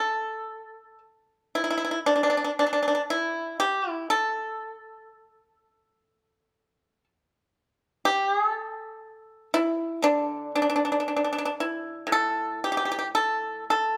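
A solo pipa carries this short fragment of Chinese traditional music, its bright, percussive fingerpicked tone placed up front and close. The mood is contemplative and full of longing, unfolding in a free rubato feel around 59 BPM in 4/4. The instrument moves between A2 and A4, spanning two octaves. Close, detailed microphones capture every attack of the picks, and the pipa itself sounds dry, with only a light reverb around the room. The passage runs for 14.0 seconds and is cut from a longer piece, leaving the single instrument suspended in quiet reflection.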